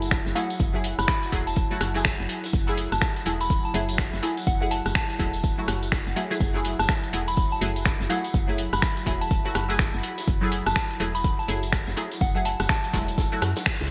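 Deep house with a late-night, smooth mood, swung 4/4 and built on a single F#m9 chord, as a tape-warm electronic kick sits up front alongside a layered kit of finger snaps, hi-hat and rim click under gated reverb, joined by a jingly tambourine and a distant, very quiet acoustic soul kit of hi-hat and snare. A woody, round FM bass anchors the low end while muted, detuned dub chord stabs with a phaser and analog chorus pump against a mellow analog pad in the background. From 0.4 seconds a soft, pure synth bell melody floats on top with chorus, 12-bit sampler grit and digital delay, all set in a plate reverb with a bright 1980s-style digital sheen in this cut from a longer piece.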